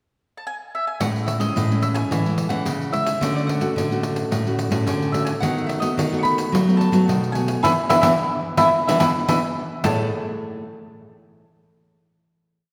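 A festive, sunny samba and choro piece in A major at 109 BPM opens with a picked mandolin pickup at 0.4 s, before the nylon-string guitar accompaniment, a nylon-string guitar bass and a jingly pandeiro join at 1.0 s. The round, up-front mandolin, its double strings ringing, carries a song-like motif melody over fingerpicked classical guitars: one plays thumb bass with syncopated plucked chords, the other, on fresh strings, a samba bass figure, with finger squeak audible from both. After a band accent, the piece settles on a final Amaj7 chord at 9.8 s in the wet reverb of a church or concert hall.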